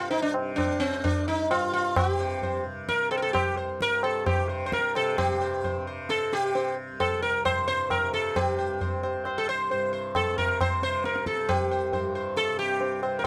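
This solemn, meditative Hindustani classical excerpt moves in a seven-beat cycle, and its pace quickens from start to finish. A plectrum-plucked sitar carries the melody up front in its middle register, its round, buzzing tone ringing with sympathetic strings. Beneath it, a softly plucked tanpura holds a low, bright, shimmering drone, sitting well back in the balance. The low-tuned tabla enters at 0.1 seconds with a short ring and a small-room character. The passage shifts into a new section at 5.2 seconds. The sound is dry and gritty, with little reverb.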